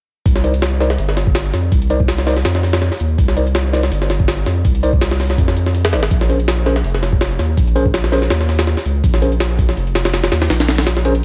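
A gritty, compressed jungle drum kit sits up front in this drum and bass excerpt, its sampler-style hits pitched up and re-recorded in a large room, with a thumpy kick, a high-tuned snare and hi-hat carrying a tape-warm character. The tempo is 164 BPM in 4/4, with a 55% swing on the sixteenths that gives the frenetic groove its shuffle, in C phrygian and tuned to A4 = 445 Hz. Beneath it, a deep, thick sine sub bass with tube saturation runs from F1 to F2, its fast attack and sustained tone also placed up front. A mellow, clean tine electric piano adds stabs from 0.4 seconds, heard as if through built-in speakers and trailed by dub echo, lending an atmospheric edge. The harmony moves from Cm to Bbm at 6.1 seconds, and the dry mix keeps drums and bass together from 0.3 to 11.2 seconds.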